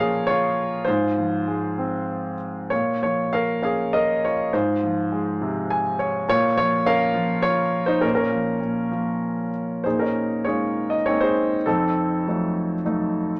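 A small room's moderate reverb surrounds a clear, up-front grand piano whose long sustain and audible action noise give this short classical excerpt an intimate, polished presence. Playing alone in 3/4 at around 94-106 BPM with a rubato feel, the piano moves in Bb minor between Bbm and Fm/Ab, adding a brief fill at 5.4 s and spanning F2 to Ab5. At 9.9 s a new section turns to Bbm11 and F7b9, deepening the bittersweet, moody character before the cut at 13.4 s.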